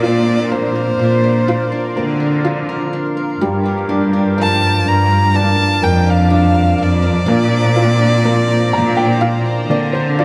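A heartbroken pop ballad at 62 BPM in 4/4, this brief passage from a longer piece moves from Bbadd9 to Gm7 and back. A boxy, focused solo violin carries the bowed melody up front with vibrato, while a smooth cello section holds the bass with even, prominent presence. Beneath them an intimate, woody upright piano with audible action noise accompanies and plays a fill from 8.2 seconds, a picked steel-string acoustic guitar adds delayed arpeggios with finger squeak in the background, and a bright, detuned synth pad with chorus sustains evolving chords, all under light studio reverb.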